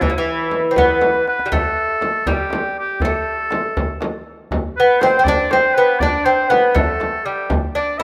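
A bright, fingerpicked lute with doubled nylon strings carries the melody up front from the opening, joined by a smooth, softly attacked oboe in classical style on a higher second line, over a deep, saturated frame drum and a close, dry tombak. This hypnotic, longing Persian modal piece moves in a straight 6/8, and a drum fill at 1.0 seconds leads into a new section at 1.5 seconds. A lush hall reverb surrounds the rough, home-demo mix of this short fragment of a longer work.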